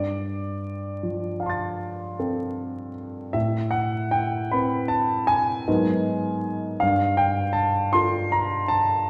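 A rubato 9/8 lilt carries this wistful, mysterious fragment of impressionist solo piano, where a clear, present grand sits up front with long sustain across a range from G2 to A6, drifting through G9sus4, Amadd9, G#m9 and Gsus2 harmonies, tuned to A4 = 444 Hz, inside a wet recital hall reverb heard from further back in the room beneath a vinyl crackle.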